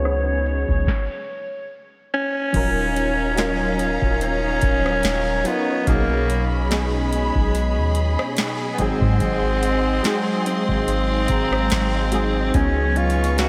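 A slow 72 BPM groove in 4/4 with a light swing on the sixteenths carries this tender, dreamy contemporary R&B passage, cut from a longer piece, where a booming, overdriven analog drum machine with deep kick, crisp snare and metallic hats sits over a long, dark 808-style bass, and a filter sweep opens the first 2.5 seconds before a stop from 0.9 seconds. A raspy, gritty alto saxophone with light vibrato carries the melody up front through a delay, backed by round, detuned analog keys with chorus and a distant, lush bowed string section that pumps with sidechain, while a bell-like celesta, very quiet and delicate, rings in from 3.0 to 12.6 seconds. The whole mix is soaked in a lush hall reverb and softened by a low-pass filter, drifting through C#9sus4, D#m9, B69 and G#7 before returning to C#9sus4.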